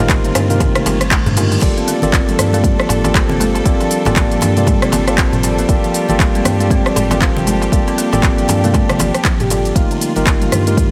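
Driving and spiritual, this afro house excerpt moves at 118 BPM in G minor with a swung 16th-note feel, built on a buzzing, woody kalimba playing arpeggios and a clean tine electric piano firing stabs through a combo amp, both carrying dub echo and sidechain pumping over sustained chords from a clear, bowed symphonic string section with light vibrato. A round sine sub bass anchors the low end beneath an overdriven, up-front electronic kick and a produced afro-pop kit of smooth hi-hats, handclaps, rim clicks, shaker, toms and crash, while a crisp metal-shell darbuka and hard-handed congas, the latter joining at 2.0 seconds, sit close and dry in the background. A brief reverse cymbal rises at 0.8 seconds into the harmony's shift from Ebadd9/G to Gm7 at 1.6 seconds, all framed by small room ambience.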